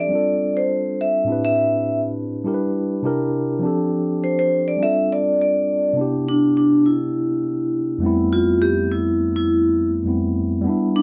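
The vibraphone, struck with medium hard mallets, carries the melody in this romantic, warm soul piece at 102 BPM in 4/4 and C major. Its tone is metallic and ringing, with a slow motor vibrato and a boxy small-room sound that places it up front, and it takes a solo across the first 6.0 seconds. A mellow tine electric piano provides accompaniment throughout, its clean, direct voicing sitting just beneath the vibraphone. The harmony moves through lush extended chords such as G9sus4, Am11 and C9 before settling at 6.0 seconds into a section built on Cmaj9 and Fmaj9#11. Light reverb softens the whole, and the 11-second clip is cut from a longer piece.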